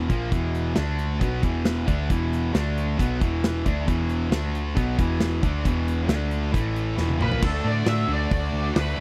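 Two overdriven electric guitars, one crunchy and up front and the other tight and bright, open this swaggering, gritty classic rock excerpt with a riff that rocks mostly between E5 and D5 chords, over a dark, round hollow-body bass and a big acoustic kit with a punchy kick and medium-tuned snare. A drum fill at 7.0 seconds leads into a new section, as a fuzzed octave lead guitar enters at 7.2 seconds with wah and slapback echo on a short high melody. The sound is dry and close, like a small-room 1970s studio recording.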